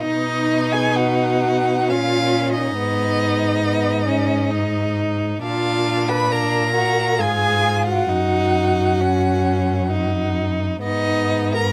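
A warm first violin carries the melody up front, its vibrato and portamento giving each phrase an expressive, yearning voice. This is a slow, elegiac romantic movement for string quartet in 3/4, played with rubato so the beats stretch unevenly. Beneath it, the second violin holds an even inner line while the viola adds focused, smooth-topped accompaniment. The cello, also up front, carries the bass with a soft attack, its own expressive portamento lending depth. All four bowed parts sound together through this 11.7-second cut from a longer piece, captured by close, detailed microphones with light reverb.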